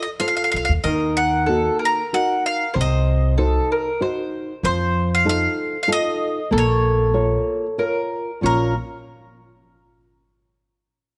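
In a rubato three-four lilt, this passionate, wistful fragment of an Italian folk serenade sets a bright, up-front bowl-back mandolin melody over a dark, thumb-plucked classical nylon-string guitar with old strings, joined at 0.5 seconds by a thumpy pizzicato upright bass and at 0.8 seconds by a mellow, woody second mandolin line, as the harmony moves from F through Ebm, Cdim and F7 to Bbm in a close, detailed recording with light reverb.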